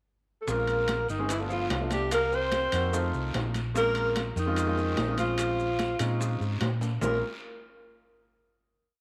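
A breathy alto saxophone leads this short, fiery Afro-Cuban jazz piece in Bb minor at 147 BPM, its mellow subtone, light vibrato and scooped notes shaping a motif-based melody up front from 0.4 seconds. A clear tenor saxophone sits in the background, doubling the line an octave below, while a polished grand piano adds syncopated chord stabs in rootless voicings over a Bbm7, G7, Cm7b5, F7 progression. A dark, round hollow-body electric bass drives the groove with a tumbao that anticipates the chords. The percussion is layered beneath: ringing, saturated metal-shell timbales playing shell pattern and bell, bright high-tuned congas with slaps and open strokes, very quiet vintage bongos in steady eighths with hand bell, a raspy distant guiro, and grainy maracas. A drum fill at 6.8 seconds sets up the final chord at 7.0 seconds, all bathed in a wet spring reverb.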